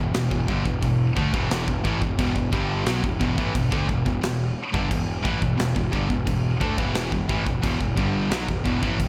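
A straight, steady 4/4 pulse drives this short heavy metal passage, cut from a longer piece and held on a single E minor chord for its full 9.1 seconds. The mood is relentless and epic. Three picked electric guitars play the riff together from the start: a bright, high-gain distorted guitar leads, while a dark, overdriven sludgy guitar and a double-tracked, overdriven semi-hollow guitar with a hollow-body tone sit very quiet beneath it. A growly, fuzz-toned picked bass, direct and amped with overdrive, rumbles in the background. The acoustic drum kit enters at 0.1 seconds and sits up front, with a punchy kick, a medium-tuned snare and crash cymbal in a small, pumping room treated with gated reverb. Light reverb and studio ambience frame a bright, 1980s-style digital production.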